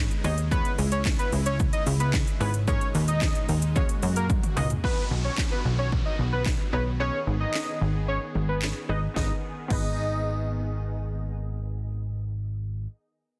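Confident and driving, this dance-pop excerpt moves at 111 BPM in G# minor with a straight 4/4 pulse, opening directly on a drop. An overdriven house kit sits up front with a punchy kick, cracking snare, metallic hats, handclaps, shaker, crash and toms, its layered sound re-recorded in a large room, and a drum fill at 4.3 seconds leads into the next section. Beneath it, a plucky, funky analog bass blends sawtooth, square and sine tones with wave-folding and saturation, pumping against the kick, while a fat, mellow lead with sub octave, chorus, vibrato and tape echo carries the melody until 10.7 seconds. In the background, a lush detuned unison pluck with ring modulation and filter sweeps and huge supersaw chords with a moving notch, both sidechained and low-pass filtered, fill out a progression from G#m through C#m, D#sus4 and F#add9 to B and back to G#m. An electronic downlifter sweeps through the middle passage from 4.8 to 9.2 seconds, and the dense, heavily limited modern master sits in a digital ambience.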